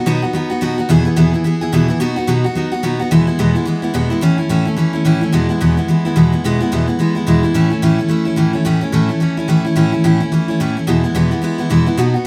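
Swung eighth notes drive a brisk 4/4 pulse, giving this short cut from a longer rock piece a retro, upbeat bounce. A picked steel-string acoustic guitar carries the whole passage as the solo part. Its jumbo body and fresh strings give a bright, full-bodied tone, with a touch of finger squeak. The opening moves between B and E before a second section from 3.1 seconds cycles through E and A. The guitar sits up front in a wet studio reverb with the feel of a band captured playing together in one room.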